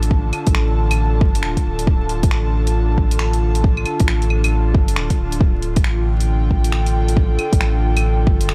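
An airy, breathy pad with a detuned, vintage warble holds a sustained D minor chord under chorus and sidechain pumping, over a round sine sub bass that pumps along and a deep house kit of claves, finger snaps and dark hi-hats, joined at 0.1 s by a deep, up-front electronic kick, the two drum parts sitting in a small room, in this wistful, rainy future garage passage cut from a longer piece at 136 BPM with a 63% sixteenth-note swing, tuned to A4 = 438 Hz and carrying a dry, gritty hardware character with vinyl crackle.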